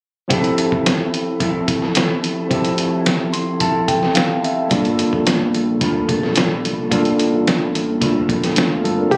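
A straight 4/4 pulse from a lo-fi, sampler-style drum kit sits up front, with a thumpy kick, a medium-tuned snare and hi-hat, all muffled and compressed as if re-recorded in a small room. This dreamy, nostalgic bedroom-pop excerpt opens at 0.3 seconds with a barky tine electric piano, lightly overdriven through a combo amp and softened by cassette tape and plate reverb, alongside a picked electric guitar through a small old amp that sounds slightly broken-up, with subtle chorus, vibrato and plate reverb. The harmony moves from Fmaj7 to Gm9, and the electric piano plays a brief fill before a chorused synth bass arrives at 4.7 seconds, glossy and retro with a pulse-width-modulated, filter-plucked tone. Just before the cut, at 9.1 seconds, round analog keys with a detuned, evolving character and subtle chorus step forward for a single melody note. The whole piece carries a hazy, phone-in-the-room quality, with club reverb and compression giving it an intimate indie pop feel.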